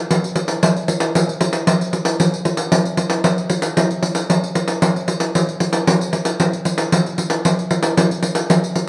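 Festive and joyful, this brief samba cut at 114 BPM in a straight 4/4 features a pandeiro, jingly and up front with a vintage, band-limited tone, playing from 0.1 to 8.9 seconds in a live room that gives it a moderate large-studio reverb.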